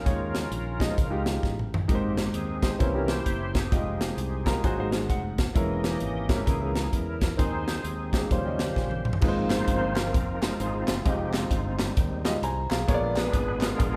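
A polished, roomy sound carries this soulful, jubilant uptempo gospel excerpt in a swung 4/4, with reedy, lightly overdriven tonewheel organ through a fast rotary speaker and chorus vibrato taking the lead with audible key click over sustained chords, while an intimate grand piano with audible action noise accompanies and adds fills. A growly fingered electric bass and an airy, up-front fusion drum kit with a punchy kick drive the groove, the drums breaking into fills at 1.4 and 8.8 seconds. At 9.2 seconds the music moves into a new section, and a very quiet, hollow group handclap joins at 9.5 seconds.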